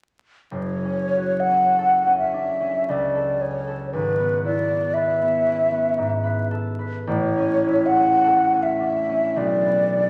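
A hollow, airy concert flute carries the melody from 0.5 seconds, its soft attack and gentle vibrato lending the line a yearning, solemn voice. This romantic classical duo unfolds in an unhurried triple metre, with a flexible rubato feel that lets each phrase breathe. Beneath it, a fingerpicked concert harp supplies ringing accompaniment across a deep range, sitting up front yet a touch lower in level than the flute. The harmony moves from F#m through E/G# and A before arriving on Bm at 9.4 seconds, just ahead of the close at 10.1 seconds, a passage cut from a longer piece. A reverberant recital hall surrounds the pair, and a vinyl crackle lends the recording an aged, intimate patina.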